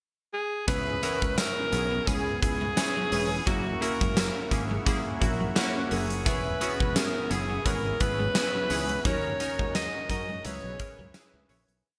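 A lightly swung sixteenth-note groove, anchored by the big gated-reverb backbeat, fat snare and punchy kick of a huge arena drum kit, drives this moody, nostalgic 1980s-style pop piece, where a bright alto saxophone with vibrato carries a motif-based melody up front from 0.3 s over glossy chorused retro synth keys in close eighth-note chords, a growly fretless electric bass with ensemble chorus playing a syncopated pop-funk line, a very quiet twangy twelve-string electric guitar riff, a dark string machine cello pad, a jingly tambourine on the backbeat and funky polysynth stabs with chorus and digital delay, all under a plate reverb before a fade-out from 9.1 s.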